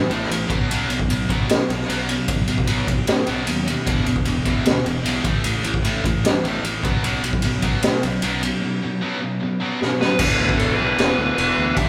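Two bright, picked distorted guitars and a growly fuzz bass open this driving, aggressive hard rock cut at 152 BPM, joined by a boomy, gritty garage drum kit with a high-tuned snare sitting up front in a live large-room sound; during a drum fill from 9.8 s, a dark, smooth lead guitar enters at 10.0 s, and a very quiet, thick overdriven tonewheel organ through a rotary speaker adds sustained chords from 10.2 s.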